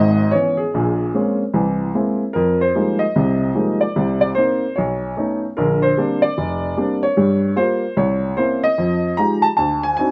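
Swung eighths at 150 BPM in 4/4 carry this late-night solo jazz fragment in F minor, tuned to A4 = 444 Hz, where a woody, natural upright piano sits up front across a span from F1 to Bb5, moving through rich harmony such as Bbm9, Fm11, B9 and C7b9 under light reverb and close, detailed miking, with a new section beginning at 2.3 seconds.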